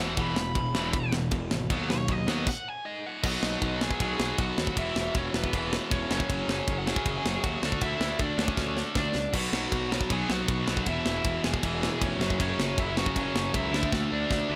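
A smooth overdriven lead guitar solo opens this rebellious, upbeat punk rock excerpt at 157 BPM in straight 4/4. It rides over a bright picked rhythm riff, a growly fuzz bass and, almost at once, a tight metal drum kit with crash, ride, snare and kick up front. After a stop at 2.5 seconds, the sludgy background guitar drops out and returns at 9.3 seconds as the chords move through B, E, F#5 and D, with drum fills along the way, delay on the lead and a dry sound with little reverb.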